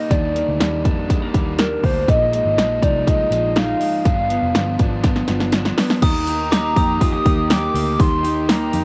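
A straight 4/4 pulse at 122 BPM drives this breezy, bright excerpt of jangly indie pop in Eb major, with a punchy, overdriven electronic house kit up front, a drum fill from 5.0 to 6.0 seconds, and a round, foam-muted picked bass entering at 0.1 seconds beneath Ebmaj7, Bb7sus4 and G7 chords. A hollow, woody clarinet-like synth lead carries the melody with chorus, phaser, vibrato and tape echo, over slightly broken-up arpeggios from a guitar through a small old amp and a background overdriven guitar. At 6.0 seconds the music settles on Eb as a sparkling glockenspiel second line and a swirling, nasal phased analog pad join, all wrapped in the feel of a home cassette recording in a moderate room.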